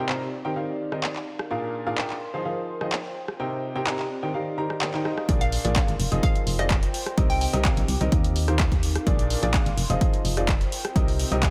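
Bittersweet and energetic, this piano house excerpt rides a clear, woody upright piano riff with audible action noise over a warbly, lo-fi pad and a punchy analog drum machine's handclaps, hi-hat and rim click, while a hollow square pluck drifts in the background, until the drop at 5.3 seconds brings in a round, dark FM bass and a tape-warm electronic kick.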